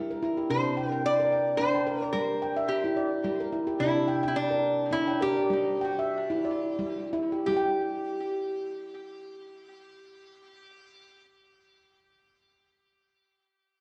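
A ringing, nitrided-steel handpan opens this meditative world piece with bright, airy arpeggios in G kumoi, struck with sharp finger strokes and sitting up front in a swung 3/4 that moves between 82 and 110 BPM. At 0.5 seconds a fingerpicked lap resonator guitar enters with a metallic, nasal slide melody touched by delay, and the pulse slows between 3.8 and 7.5 seconds before the harmony drops away for a closing passage. A lush recital-hall reverb and worn cassette tape with warbly pitch drift give this hypnotic fragment of a longer work an aged, dreamlike haze.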